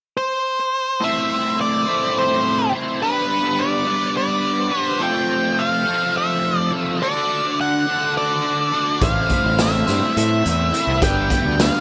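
A straight, odd-metered 7/8 pulse drives this trippy, hypnotic psychedelic rock piece, cut from a longer work. A dark, distorted octave-fuzz lead guitar carries the melody from 0.2 seconds, picked up front and trailed by tape echo. At 1.0 seconds a cranked stack guitar enters with a bright, double-tracked overdriven riff, swirled by a rotary speaker and tape echo, as the harmony moves through Am, G, F and D before returning to Am and G. At 9.0 seconds a round, fuzzed fingered electric bass and a raw garage drum kit join, the kit gritty and saturated in a pumping room, with a punchy kick, medium-tuned snare, hi-hat and a rolled-off top. The small room reverb and echo-heavy mix wrap the whole piece in trailing repeats.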